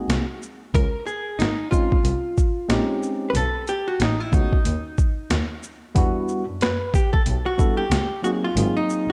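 A clean, picked hollow-body jazz guitar with tape echo sits up front and takes a solo from 6.0 seconds in this mellow, cool jazz-hop excerpt, over a worn, slightly out-of-tune tine electric piano heard through its built-in speakers, a distant, reedy bowed double bass with gut-string tone and light vibrato, and a gritty, overdriven boom bap sampler-style kit of thumpy kick, high-tuned snare, hi-hat and shaker swinging in 4/4, all set in a dark production with light reverb.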